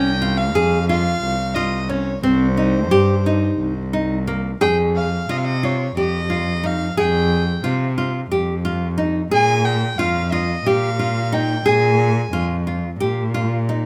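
Set in an uneven 7/8 with a straight feel, this restless, pensive piece of contemporary chamber music is cut from a longer work. A bright, full-bodied nylon-string guitar is fingerpicked in classical arpeggios up front, while a single bowed cello carries a smooth, even bass line with a warm vibrato. A dark, earthy violin sings the melody with light vibrato until 12.4 seconds. Close, detailed microphones and a light reverb frame the trio, and a second section begins at 4.6 seconds.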